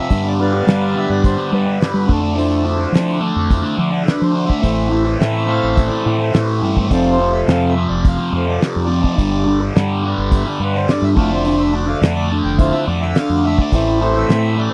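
Psychedelic rock with a hazy, trippy mood, cut from a longer piece, where a reedy, breathing harmonium takes the solo over sustained chords while a bright, double-tracked fuzz guitar riff with phaser sits up front. A round, punchy fingered bass and a cloth-damped, thuddy drum kit with a fat snare, tight kick and rolled-off top anchor the cycle of G, Dm7/F, Am and F. The sound is dry and close, in the manner of a 1970s studio recording.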